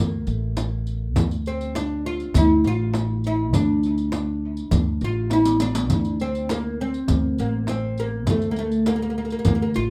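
A steady, straight 4/4 pulse at 101 BPM drives this short Arabic maqam ensemble excerpt in D maqam bayati, its mood hypnotic and melancholic. Up front, a bright, woody fretless oud carries the melody between A3 and F4 with plectrum-plucked double strings, a tape echo trailing its notes. Beside it, a pizzicato upright bass with steel strings holds the low end from A1 to D2 with a woody, warm body. The percussion gathers in quickly: a vintage, band-limited riq with bright jingles enters at 0.3 seconds, and at 0.6 seconds a compressed, saturated frame drum played with hard hands arrives alongside a small, high clay-shell darbuka, close and dry and tapped with soft hands in the background. A drum fill breaks the groove from 5.3 to 5.9 seconds. The whole sits in a wet studio reverb with the rough character of a home demo mix.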